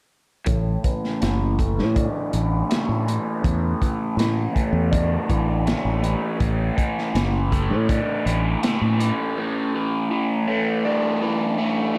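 Psychedelic rock at 81 BPM in a trippy, kaleidoscopic mood, cut from a longer piece, where a raw, double-tracked garage guitar riff, overdriven, lo-fi and put through phaser and a filter sweep, rings over an Asus4 chord from 0.5 to 12.0 seconds alongside a round, up-front fingered electric bass and a gritty, saturated breakbeat kit with a punchy kick and rolled-off top, both entering together with the guitar and dropping out near 9 seconds, all soaked in a dreamy plate reverb.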